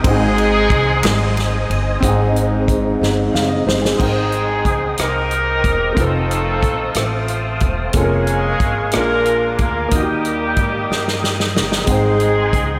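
In a straight 6/8 at 61 BPM, this hopeful, uplifting slow gospel excerpt in Ab major sets a vintage, up-front horn section with vibrato, soft attack and octave doubling on the melody over a clear, smooth upright piano, a tonewheel organ in the background with key click, chorus vibrato and slow rotary speaker that takes a solo from 2.0 to 4.0 s, a woody pizzicato upright bass and a natural country drum kit with bright cymbals and fills, while a very quiet, hollow group handclap appears at 1.0 s, the mix bathed in a lush hall reverb for a big arena sound.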